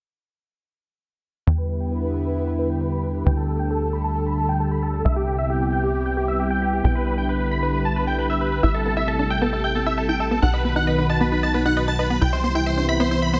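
Set in light reverb and a digital ambience, this euphoric, bittersweet trance passage moves at 134 BPM in E minor. From 1.5 seconds a huge, bright supersaw lead carries the melody through phaser, tape echo and a low-pass filter sweep, over a thick, warbling pad with chorus and a punchy, driving sequencer bass, as the chords move from Em7 through Dsus4, Cmaj7, Am7 and B. At 8.6 seconds a detuned unison pluck adds short-decaying arpeggios coloured by cassette tape and tape echo.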